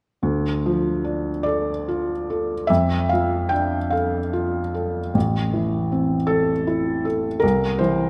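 Romantic classical nocturne for solo piano in a compound metre, wistful and mournful, with a freely breathing rubato that lets each phrase linger in this brief excerpt. A felt-muted upright piano plays alone from 0.2 to 8.1 seconds, ranging from deep bass up into the middle-upper register, its soft, mellow tone dampened by thin felt and sitting up front and intimate, with the natural clicks of its action clearly audible. Moderate recital-hall reverb gives the muffled notes a gentle halo as the harmony drifts through somber minor chords.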